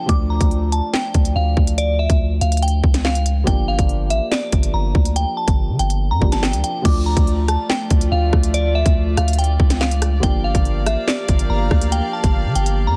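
Drill hip hop in D minor at 142 BPM with a half-time feel, dark and tense, where a glassy, warbling FM synth bell carries the melody over soft felt-muted upright piano, a deep sine 808-style bass and a hard-clipped, crisp drill kit with handclaps, rim clicks and crash, before a distant, reedy bowed string section joins at 6.8 seconds on sustained chords cycling Dm and Gm7 in a dry, dense, heavily limited mix cut from a longer piece.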